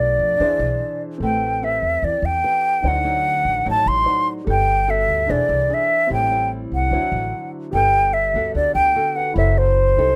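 A straight 4/4 bossa nova pulse at 147 BPM sets a breezy, sunny mood in G major for this short fragment of a longer piece, where an airy, close-miked jazz flute sings the expressive melody up front with vibrato and a soft attack, over a woody pizzicato upright bass, a small fingerpicked nylon-string guitar and an intimate concert grand piano with audible action noise in the background, moving through chords such as Am9, D7b9 and Gmaj9 in a rough home demo mix with light reverb.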